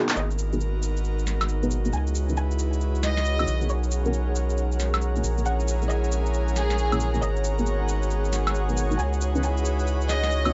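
This dry, gritty hardware recording carries transformer saturation and a light reverb, with a top end that stops at 7.7 kHz. It is a late-night, soulful stretch of two-step UK garage at 136 BPM in G# minor, swung on the sixteenths, and it opens at 0.0 s on a break with a drum fill. A punchy analog drum machine, tape-warm and re-recorded in a small room, plays handclaps, hi-hat, shaker, snare and woodblock over a thick, saturated sine sub bass that sits up front. Deep, dark chord stabs with a detuned, filter-plucked decay pass through chorus, phaser and tape echo, while an airy, breathy pad holds sustained chords beneath as the harmony moves through G#m9, C#m11, Bmaj9 and A#m7b5. A chamber violin section carries the melody with light vibrato and an earthy, biting bowed tone, and tape echo trails its smooth top. From 1.4 s a cloudy, blurred granular pad drifts in with its own reverb, adding an evolving haze above the groove.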